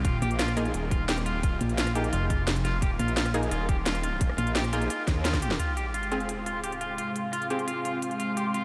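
A dreamy, reverb-soaked mix with a huge ambient tail frames this short cut from a dark, technical drum and bass track in F minor, running at 173 BPM with an aggressive, tense mood. Tape-warm drums drive it, with a tight electronic kick, a cracking snare, crisp hats and rim clicks, while a twangy electric guitar at the edge of break-up picks arpeggios through a low-pass filter and tape echo, pumping against the kick. Low end comes from a thick, swirling detuned saw bass with phaser and overdrive that stops at 4.4 seconds, and a metallic, wobbling FM bass with chorus and tube saturation sitting up front. Bold, punchy orchestra-hit-style stabs flicker in the background over an Ebsus4 harmony, and a drum fill leads to a sub drop impact at 5.6 seconds as the chord moves to Fm. In the closing seconds an airy, breathy pad and a deep, moody evolving pad fade in with chorus and sidechain pumping, spreading a hazy wash over the guitar and kit.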